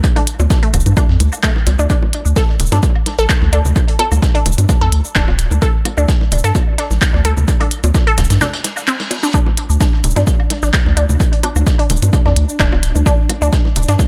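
A swung 129 BPM groove in 4/4 drives this cool, sparse minimal techno cut in D minor, taken from a longer piece and anchored by a punchy, up-front electronic kick. Around it sit a gritty, sampler-style soul kit of hi-hat, snare and tambourine in the background, high-passed, pumping and fed into tape echo, plus a clicky, overdriven minimal kit of handclaps, hi-hat and shaker, with layered bongos, woodblock and congas threaded through analog delay. A round, deep analog bass holds the low end with sidechain pumping, while a squelchy, resonant blip pluck riffs between A3 and A4 through phaser and analog delay. A brief break arrives at 8.4 seconds, marked by a reverse cymbal in the background, and from 9.8 seconds a tense, swarming drone on D4 swells slowly into the backdrop with its own reverb. The mix is dry in room sound but heavy with echo, giving the sparse parts a bouncing, hypnotic depth.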